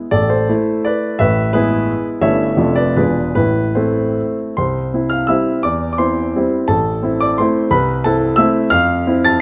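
Capricious and nostalgic, this fragment of a romantic classical dance in triple time features a solo grand piano, polished and up front with short sustain, playing dotted rhythms with supple rubato from the deep bass to the high treble, closely and clearly captured in a moderate recital-hall reverb, with a new passage taking over at 4.6 seconds.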